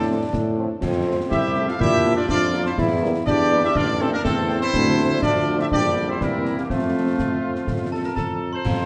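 Mellow trumpets carry the melody over a distant woodwind second line, clear sustained trombone chords, softer French horns and a vintage-tinged tuba bass in this proud, festive military-style wind band march, with snare, bass drum and dark-toned clash cymbals joining close by at 0.3 seconds, a smooth-topped euphonium adding a vibrato-rich second line from 1.3 seconds, and a bright, sparkling glockenspiel ringing in at 7.9 seconds, all within the long reverberant space of a scoring stage in this excerpt from a longer piece.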